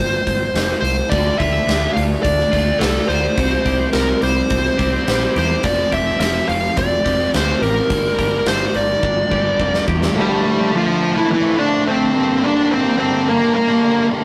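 Dark and cathartic, this quiet-loud alternative rock fragment, cut from a longer piece, has a straight pulse and the rough feel of a rehearsal room with a touch of moderate reverb. A dark, smooth lead guitar carries the melody up front from the start, its overdrive trailed by tape echo. A growly, fingered electric bass with fuzz sits under it beside a huge arena drum kit with a fat snare and punchy kick. From 1.1 seconds an overdriven electric guitar plays a picked riff, while a twangy, clean, compressed guitar picks arpeggios in the background. A drum fill closes the opening part. At 10.1 seconds the bass, drums and both of those guitars drop out, and a thick, bright fuzz guitar takes over the riff up front, beneath a very quiet chamber string section holding intimate, sul tasto chords with light vibrato and soft attacks.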